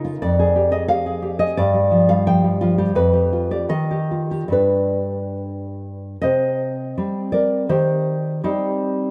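A nylon-string guitar, dark and full-bodied with a deep classical tone, carries this short romantic piece alone from start to finish, thumb-plucked and placed up front. The mood is passionate and intimate, moving in 2/4 with a rubato feel that drifts between 67 and 92 BPM in C minor, tuned to A4 = 442 Hz. The harmony opens on Fm13 and passes through Dmadd11/G, G7/F and Ebadd9 before settling on G, then a second section from 6.2 seconds turns to Cm and Cm/Eb. The guitar ranges from F2 up to G5, and a moderate plate reverb with a three-second tail surrounds its acoustic sound. The mix has the rough character of a home demo, and the clip is cut from a longer piece, ending at 9.1 seconds.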